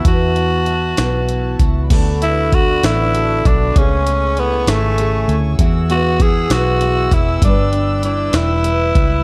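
A raspy, growling tenor saxophone carries the melody up front with light vibrato in this tender, swaying pop ballad in 6/8 at 65 BPM, cut from a longer piece. Beneath it, a fingerpicked steel-string acoustic guitar plays accompaniment, a round, foam-muted vintage electric bass sits up front, and a compressed, pitched-up jungle sampler-style kit adds a thumpy kick, snare, hi-hat and crash. A distant chamber string section holds soft, floating chords in the background, all within a dark, warm production with light reverb and a small-room ambience.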